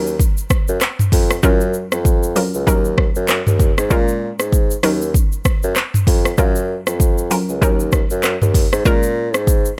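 An afrobeats groove at 97 BPM in 4/4 with a swung sixteenth-note feel, this short cut from a longer piece sits in Eb minor with a mellow, sultry mood. The electronic afro-pop drum kit leads the mix up front, its deep kick and metallic hi-hat joined by handclaps, rim clicks, shaker and toms. Carrying the bass line, a mellow bassoon played in a classical style with light vibrato sits prominently between Db2 and Bb2. A hollow square-wave pluck supplies the accompaniment, detuned, bouncy and bright with a fast attack and decaying, evolving filter tone, treated with chorus and phaser. The harmony circles through Ebm7, Gbmaj7 and Bbm7, and the dry sound leaves every part close and clear.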